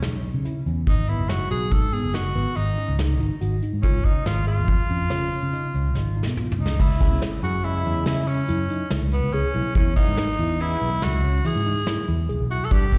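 Heard as a live gig through the venue's PA, wrapped in recital hall reverb, this bright, intricate progressive instrumental is cut from a longer piece and moves at 142 BPM in a straight 7/4, tuned to A4 = 437 Hz. A vintage brush drum kit sits up front with a dark, smooth sound, a tight kick and a medium-tuned snare, beside a punchy, amped fingered electric bass. Further back, a worn, slightly out-of-tune tine electric piano plays arpeggios through phaser and slapback echo. From 0.9 s a breathy, raspy tenor saxophone carries the melody, its clear vintage tone treated with slapback echo and delay. A drum fill leads into a new section at 6.8 s, where the harmony moves from G#m and C# to C#m and E. At 7.0 s a gritty, overdriven tonewheel organ adds thick accompaniment in the background, with key click, percussive second harmonic percussion, chorus vibrato and a slow rotary speaker.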